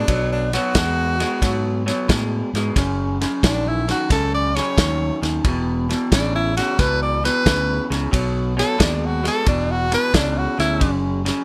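A dry, close-up sound carries this swaggering, rollicking electric blues shuffle at 89 BPM with a swung feel, where a clear, present tenor saxophone takes a jazz-style solo with light vibrato and scooped notes over a slightly broken-up, lo-fi electric guitar riff through a small old amp, a round, punchy fingered electric bass, and a soul drum kit with a tight kick, medium-tuned snare, ride cymbal and rolled-off top, all in an 11.4-second excerpt cut from a longer piece.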